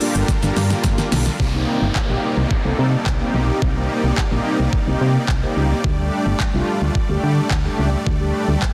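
Dense, heavily limited and lightly bathed in digital ambience, this confident, driving dance-pop excerpt moves in a straight 4/4. Up front, a tape-warm, layered electronic drum kit pairs a knocking kick and fat snare with crisp hats, handclaps and shaker, playing a fill from 0.3 to 1.4 s, while a brief, close and dry group handclap sits barely audible. From 0.2 s a punchy, round FM bass with a fast, decaying attack and a dark tone anchors the low end with sidechain pumping, alongside mellow synth brass built from detuned sawtooth and square waves with a sub octave, filter sweep, chorus and vibrato. Huge, lush supersaw chords sustain in bright detuned unison, also pumping, as the harmony shifts from Gm7 to Cm7 and then to Dsus4 at 5.8 s. A downlifter drifts in the background from 1.4 to 5.8 s.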